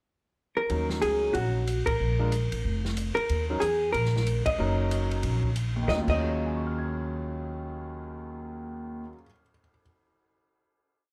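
A dark, clean hollow-body electric guitar carries a compressed, motif-based melody up front in this short, cool, late-night jazz piece in Eb minor, swinging at 186 BPM in small-group bop style. Alongside it, an intimate concert grand with audible action noise and long sustain comps in syncopated drop-2 voicings, a woody, growly pizzicato upright bass plays a two-feel line, and an open drum kit with dark cymbals and a boomy kick keeps a ride cymbal pattern. After band accents at 1.8 and 4.4 seconds, the group arrives on a final chord at 5.9 seconds, all under light reverb.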